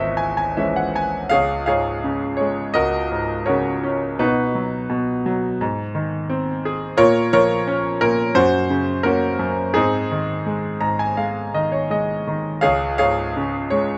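Heard close and in fine detail, with a light reverb around it, this short passage cut from a longer classical work features a lone concert grand piano, bright and brilliant, sitting up front with a deep bass and a short sustain. The mood is moody and bittersweet, set in Db major at about 85 BPM in 4/4, though the beats are uneven and the pulse breathes freely in a rubato feel. The piano carries the whole piece as a lyrical solo, reaching from G#1 up to Bb5. It opens with a brief fill over a C#m chord before settling onto Db at 1.3 seconds, where the main passage begins. The harmony then moves through Gbadd9 over Db, Cb, Ab, Bbm, Gb and Ab, with a second fill from 10.4 to 12.6 seconds before the music comes to rest on Db at 12.6 seconds.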